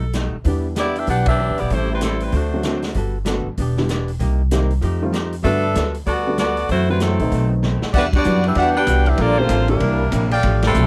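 Big band swing in G major at a brassy, energetic 192 BPM, this roughly eleven-second cut from a longer piece sets a bright, vibrato-laden saxophone section on the melody over a thumpy gut-string upright bass, a woody short-sustain upright piano, a dark, clean, hollow-body archtop guitar in the background and a distant, roomy drum kit with punchy kick, until a soft-attack trombone section slips in at 7.0 seconds and an up-front trumpet section adds stabs from 7.9 seconds, with band accents at 1.2, 8.1 and 10.6 seconds in a dry sound.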